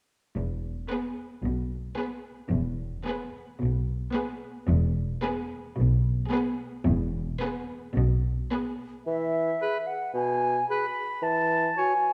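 A dark, warm production set in a wet recital hall, this playful, whimsical film cue in E major moves at 110 BPM in a straight 4/4 with a quirky, mischievous air. Cellos with portamento and close double basses hold the low end from 0.4 s, joined by a focused violin melody, a second violin line and lush, smooth violas until roughly 8.9 s. At 9.1 s the strings give way to woodwinds, as an airy flute and roomy bassoon lead in, soon met by a clear oboe and a mellow clarinet, before the harmony shifts to a rootless F#m7/E at 11.2 s.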